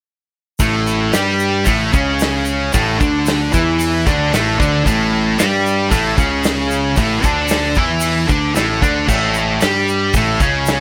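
A light reverb sits over this raw, swaggering garage rock excerpt in A mixolydian at 113 BPM, led by a thick, double-tracked fuzz guitar riff that is bright, distorted and pushed up front. Picked electric bass runs direct underneath, while a vintage acoustic drum kit pumps in a small room, with a punchy kick, medium-tuned snare, hi-hat and dark crash cymbal, its top rolled off. A grainy tube shaker stays in the background, and all four parts play together from 0.6 to 10.8 seconds.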